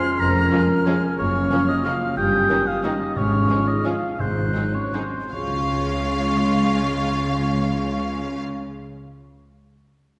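In a rubato three-four lilt that slows between 2.7 and 5.3 seconds, this sweeping, elegant classical excerpt carries a smooth, vibrato-laden violin melody over a background second violin line, lush violas, focused cellos and double basses, while an airy flute, a distant, roomy oboe, a soft-edged clarinet and mellow French horn chords sound alongside ringing, very quiet thumb-plucked harp arpeggios, with articulate hard-mallet timpani entering at 3.2 seconds, the whole set in a wet concert hall reverb and marked by lossy compression artefacts.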